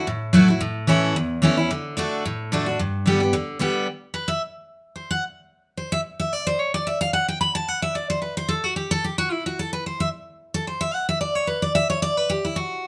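A picked steel-string acoustic guitar opens this lively, joyful bluegrass excerpt at a brisk 221 BPM in G major, moving through D, A and G chords with a swung eighth-note feel. From 3.9 seconds the chords drop away and the lone guitar takes a solo that runs to 12.9 seconds. Across the excerpt it ranges from low E2 up to B5, and its bright, full-bodied jumbo tone with fresh strings sits up front in a moderate studio reverb.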